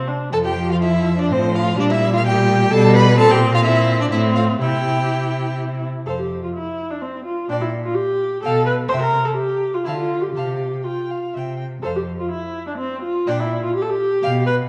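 In a triple-time, rubato lilt, this spirited, cheerful excerpt from a quick classical-period string quartet movement sets a focused first violin melody with a smooth top above a rich, distant second violin that slides expressively with portamento, while a smooth, even viola fills the harmony and a clear, up-front cello anchors the bass, all bowed with vibrato inside a wet recital-hall reverb and a dark, warm production.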